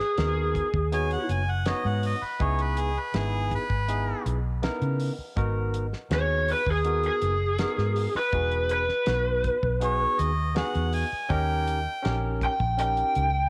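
A moderate spring reverb colors this short, mournful excerpt of straight-eighth soul blues in G# minor at 81 BPM, where an overdriven lead guitar through a small cranked amp opens with a brief phrase and then carries a dark melody up front from 6.1 seconds, a bright harmonica with scooped notes and light vibrato takes a punchy second line, a barky tine electric piano with subtle chorus comps over G#m7, C#m7, Emaj7 and D#7, a round, foam-muted vintage bass anchors the low end, and a damped 70s kit with a fat snare and tight kick keeps a dry, rolled-off pulse.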